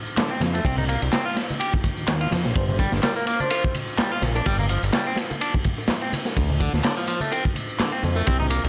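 Swaggering and raw, this 126 BPM breakbeat passage in G minor rides a swung sixteenth-note groove built on a crunchy, gritty drum kit of tight kick, snare and dark ride cymbal up front, beside a fat, detuned analog bass thickened by tube saturation, while a twangy, clean electric guitar riff runs through overdrive, a low-pass filter and digital delay, electronic tambourine and handclaps add an analog electronic touch, soft-handed congas and bongos sit in the background, and a breathy flute-like synth lead with chorus, telephone tone, 12-bit sampler grit and delay surfaces briefly from 2.6 to 3.7 seconds over chords moving from Dm7 and Cm7 to Gm and Dm, the whole set in a small room with light reverb.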